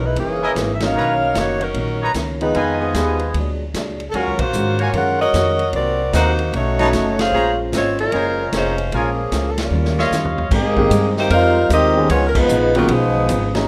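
A brassy, swinging big band jazz passage in Bb minor at 151 BPM opens with a vibrato-rich saxophone section carrying the melody up front over a dark, compressed hollow-body electric guitar and a woody pizzicato upright bass, as a vintage drum kit with a punchy kick and rolled-off top, a polished grand piano and clear, vibrato-laden trumpet stabs join in amid the band accents, until a loose, warm trombone section slips in at 9.6 s on a second line beside a drum fill at 9.7 s, all set in a moderate large-studio reverb.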